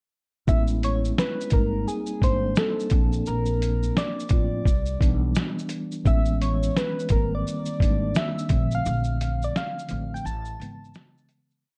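An up-front, muffled sampler-style drum kit with a thumpy kick and shaker sixteenths drives this cosy, dreamy lo-fi hip hop piece at 86 BPM with a swung feel, beneath a sparse, woody pizzicato upright bass line, a mellow tine electric piano that repeats rootless maj9 chords like a sampled loop through cassette tape, and a round, detuned FM synth lead that carries a free melody through chorus, analog delay and plate reverb, before a break and fade-out from 8.8 seconds.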